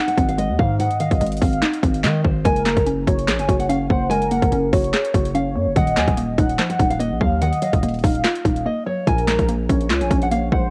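Eerie and brooding, this half-time trap cut from a longer piece sets a fingerpicked nylon-string guitar melody, dulled by a low-pass filter and cassette tape, over a velvety, detuned synth lead carrying a second line with chorus, vibrato and tape echo. A hollow, bouncy square-wave pluck supplies mellow accompaniment while a distorted, heavy 808-style bass and an up-front, overdriven electronic kit with a hard-clipped kick, sharp snare, metallic hats and handclaps drive underneath. The chords move from Ab through Gbadd9 and Ebmadd9 to Bbm7, with a short break at 8.7 seconds, all wrapped in digital ambience and the character of a home cassette recording.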